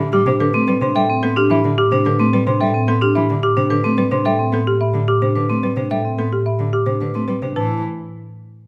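A woody, dry folk marimba played with hard mallets carries the melody up front in this meditative, hypnotic minimalist classical pattern piece in A minor at 109 BPM in 3/4, over a single rich cello bowed with vibrato and portamento, a bowed double bass section holding A2, delicate bell-like celesta arpeggios sounding high above, and metallic, ringing vibraphone arpeggios that join at 0.3 s, heard through close, detailed microphones in a moderate recital hall as the harmony moves from Am11 to Asus2 at 7.6 s in this excerpt from a longer piece.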